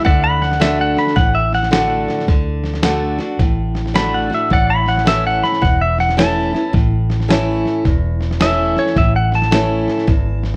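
Lightly reverberant and easygoing, this nostalgic honky-tonk and classic country excerpt swings gently in four, with a twangy, fingerpicked pedal steel guitar up front carrying the melody as a solo, using slide and volume swells. Beside it, a picked steel-string acoustic guitar with audible finger squeak plays accompaniment up front, while a smooth vintage grand piano and a second, brighter pedal steel holding sustained chords sit in the background. A dark, round, foam-muted electric bass and a muffled, pitched-down sampler-style drum kit with a thumpy kick enter at 0.1 seconds, as the harmony moves from D to A at 4.5 seconds.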